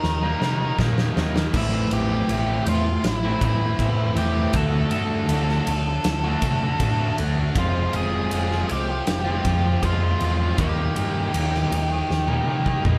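An octave-fuzz lead guitar carries the melody in this anthemic, restless quiet-loud alternative rock passage, its dark, fuzzy tone riding over a heavy band cut from a longer piece. Beneath it, a bright, compressed fuzz guitar and a sludgy, overdriven guitar that comes in at 0.2 seconds both play riffs, the latter adding a warm, picked grit. A fingered electric bass sits a little higher in the mix with a round, punchy, amped low end. The huge arena drum kit has a pumping room sound, a fat snare, a punchy kick and bright crash and ride cymbals, with drum fills opening the passage and returning near its close at 12.1 seconds. The harmony moves through Eb, Am, D and Fm before settling back on Eb, and the whole band sounds as if playing live together in one large studio room with a moderate reverb.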